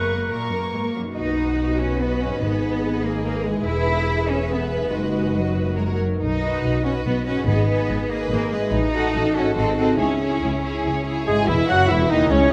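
Intense, up-front cellos and a rich double bass section drive this stormy, urgent excerpt from a fast romantic movement for symphony orchestra, moving at 143 BPM in 3/4 in B major. Above them a distant, lush first violin section carries the melody with vibrato. A soft-edged second violin line, clear close violas and a ringing harp playing arpeggios in the background fill out the middle of the texture, with a warm, roomy oboe appearing briefly at the start and again near the close. Timpani with calf heads strike at 2.4 seconds and again later, and the harmony darkens into C# minor from 8.7 seconds. At 11.3 seconds a very quiet pure flute section, a bright solo clarinet, a present bassoon and a mellow horn section join for the closing bars, all set in a moderate recital hall reverb.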